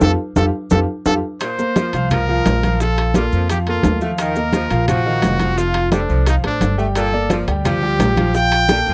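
Driven by ringing congas, metal-shelled timbales, quiet saturated bongos and grainy maracas in the background, this joyful, danceable salsa excerpt opens with a band accent and drum fill before an edgy saxophone section enters at 1.4 seconds beneath a bright, up-front trumpet melody with vibrato, while a clear baby grand piano with audible action noise and a woody, thumpy gut-string upright bass fill out a dry, close 1970s-style studio sound.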